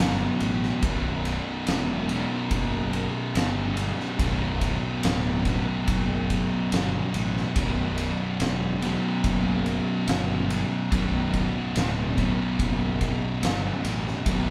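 An oversized, low-tuned acoustic drum kit sits up front, its punchy kick, fat snare and ride cymbal sounding dark, saturated and gritty in a bright stone room. This sludgy, heavy stoner and doom metal fragment moves at 72 BPM in a straight 4/4. Two distorted, picked fuzz guitars grind out a riff on B5 in the background, with a growly, overdriven fingered electric bass beneath them, all played live in one room with light reverb.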